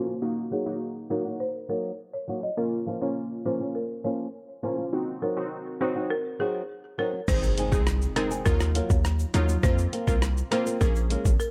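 A punchy, heavy 808-style bass and a gritty, compressed sampler-style drum kit with a thumpy kick arrive together at 7.3 seconds with a very quiet electronic impact and a faint tube shaker, lifting this sultry, bouncy dancehall excerpt in Bb minor at 102 BPM, where a boxy, thumb-plucked flamenco guitar plays up-front arpeggios, a woody folk marimba with delay carries the melody, and a glassy, detuned wavetable pluck with chorus, sidechain pumping and a filter sweep over the opening accompanies them, all within a dark production with light reverb.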